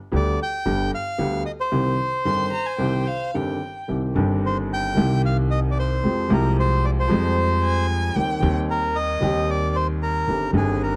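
Tango with a passionate, sultry rubato feel, cut from a longer piece, in which a reedy, close-miked bandoneon carries the melody up front over a smooth, vintage baby grand piano and a woody, pizzicato upright bass, while a single bowed violin with vibrato and portamento adds a rich second line at about 2.3 and 7.6 seconds, framed by light reverb in a dark, warm production.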